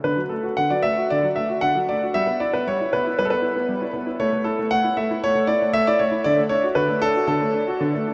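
A playful, cheerful classical-period piano sonatina in D major at 116 BPM, this short excerpt features a solo grand piano, clear and intimate with audible action noise, playing up front from D3 to F#5 through D, Em/G, A5 and back to D, all bathed in a huge, wet reverb that suggests a vast, echoing space.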